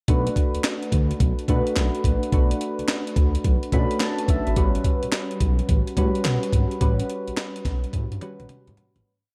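A hard-swung drum-machine beat at 107 BPM drives this punchy, slick new jack swing piece in B minor, with a gritty, thumpy sampler-style kit and clap-layered snare up front, a smooth gliding synth bass bouncing under soft, round electric-piano-like synth keys pushing chords through chorus and phaser, moving from Bm7 to A13 in a short verse with a keys fill at 3.4 seconds before a fade-out from 6.8 seconds closed by a drum fill.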